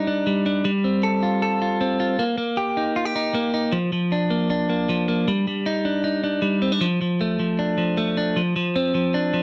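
Indie pop with a youthful, breezy mood at 156 BPM, this short fragment features a lone clean electric guitar, picked and compressed and sitting up front between F3 and A4, moving through Ebmaj7/G, Fadd9, Eb, Bb and a rootless Cmadd9 before reaching Dm at 6.8 seconds and Dm7/F at 8.4 seconds, all set in a dark, warm production with light reverb.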